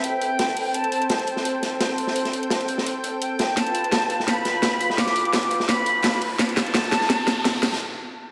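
Soaked in a lush 2.1-second hall reverb, this dreamy, melancholic liquid drum and bass fragment at 170 BPM sets a distant, airy jazz flute melody with vibrato and a chiffy attack, roughened by vintage 12-bit sampler grit and delay, over a thick, detuned unison pad holding chorused chords from Am9 to G9 at 3.6 seconds. Two drum kits drive the build-up: an up-front electronic kit with a cracking snare and bright, overdriven hats, layered with a dark, saturated acoustic breakbeat kit recorded in a small room with a rolled-off top. A drum fill arrives at 3.6 seconds, and a background riser joins at 4.4 seconds before a brief break at 7.8 seconds.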